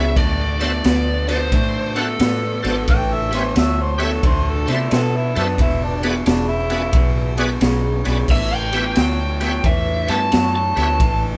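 A dark, overdriven lead guitar, picked through a small cranked amp, carries the melody of this rollicking, soulful electric blues shuffle and returns for a solo from 8.3 seconds. Underneath at 89 BPM in a swung 4/4, a raw garage drum kit sits up front with a boomy kick, high-tuned snare, ride and crash, its sound saturated and pumping in a small room with a rolled-off top. A vintage foam-muted bass, fingered, round and punchy, anchors the groove beside a twangy, slightly broken-up rhythm guitar riff from a small old amp. A full, shouting tonewheel organ with key click, slow rotary speaker and chorus vibrato fills out the accompaniment. Between 2.9 and 7.1 seconds an amplified, gritty harmonica adds a jazz-style second line with scooped notes, tongue slaps and analog delay, as the changes move through D7, A7 and E7 in a band that sounds like it is playing live in one room with light reverb.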